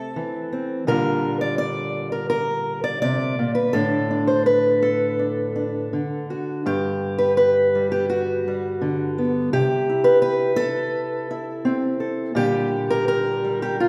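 A fingerpicked acoustic archtop guitar plays alone from the start, sitting up front with fresh strings and a warm tone, in a nostalgic, peaceful folk piece with a loose, rubato feel. Ranging from G2 up to D5 and moving through chords such as C6, Bb6, D5/A and Gmaj7, it plays a short passage and then returns to it at 6.7 seconds. A wet recital hall reverb surrounds the guitar, and this excerpt, cut from a longer piece, ends at 13.9 seconds.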